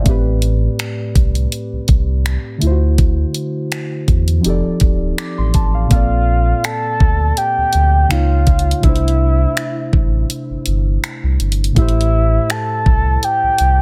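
A round, octave-layered synth lead with chorus, delay and vibrato carries the melody from 5.9 seconds over muted, felt-like synth keys, a deep sine-toned sub bass and an up-front electronic kit of knocking kick, hi-hat and finger snaps, giving this dry, densely mastered contemporary R&B excerpt a sensual, late-night mood.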